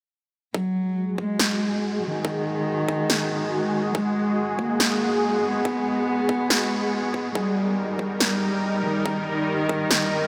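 A dark, woody solo cello opens at 0.5 s with vibrato and a sul tasto tone, its melody carried on analog delay, as a punchy, layered electronic kick with a high-pass filter arrives alongside, setting up an aggressive, heavy wobble dubstep excerpt in G# minor at 141 BPM with a half-time feel. A bright, detuned supersaw pad joins at 1.0 s with slow-attack sustained chords, lush chorus, sidechain pumping and a low-pass filter sweep, while a punchy electronic snare in a small room completes the up-front drums. The harmony moves from G#m7 to D# at 7.4 s, and the whole dreamy mix is soaked in a huge ambient reverb.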